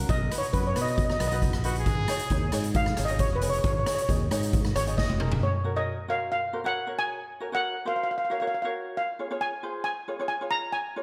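Sunny and carefree, this 135 BPM calypso puts a shimmering, metallic steel pan up front on the melody over a thumb-plucked ukulele with slapback echo, a growly, punchy fingered electric bass and a boomy, airy street-band drum kit, while a mellow trumpet with light vibrato and scooped notes adds a brief jazzy second line from 1.6 s, and a drum fill at 5.0 s leads to the bass and drums stopping at 5.4 s, leaving the pan and ukulele to carry on alone in a lush hall reverb with a big arena sound.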